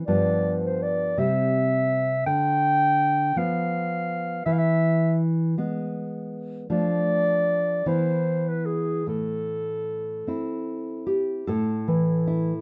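A slow, rubato 6/8 lilt of roughly 48-55 BPM in dotted quarters carries this solemn, elegiac romantic duo in A minor, tuned to A4 = 438 Hz and cut from a longer piece. A mellow, classical-style clarinet sings the solo melody up front from 0.1 s. Beside it, a thumb-plucked nylon-string guitar with fresh strings and a deep classical tone lays down the accompaniment through harmonies moving from G7 and C toward E and Am. The clarinet falls away at 11.0 s, leaving the guitar alone until 12.6 s, all within a light reverb.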